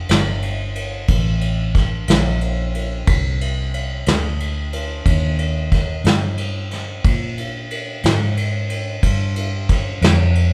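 A laid-back, swaggering slow blues in 12/8, cut from a longer piece, where a round, punchy, foam-muted fingered electric bass opens and is joined at 0.1 seconds by a vintage brush drum kit with a dark, smooth sound, tight kick and medium-tuned snare sitting up front, the two playing live together in one room under light reverb.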